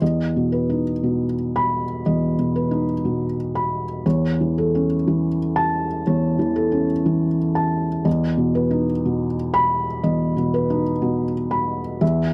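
A felt-muted upright piano plays alone, dark and close with its action noise audible, moving through E5 and A/E chords at a rubato 60 BPM in 4/4 and tuned to A4 = 436 Hz, in this tender, intimate 12.3-second fragment of neoclassical minimalist piano, set in a dry 1970s-style studio sound with light reverb.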